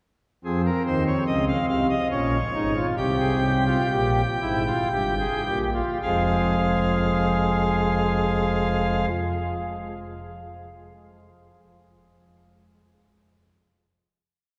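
A pipe organ on a nasal cornet solo stop, colored by tremulant and voiced in a romantic manner, carries this brief, complete baroque-style fugue from 0.4 seconds. Its three imitative voices unfold in a serious, contemplative mood over a triple metre, spanning from deep pedal notes to the upper treble. The organ sits up front in the texture, yet it is heard from further back in a cathedral whose long, wet reverb lingers around every line. The exposition moves through minor harmonies toward a dominant seventh, gradually slowing until 7.7 seconds. At 6.0 seconds the piece settles onto a sustained final minor chord, with the organ sounding until 9.1 seconds as the resonance of the vast space carries on.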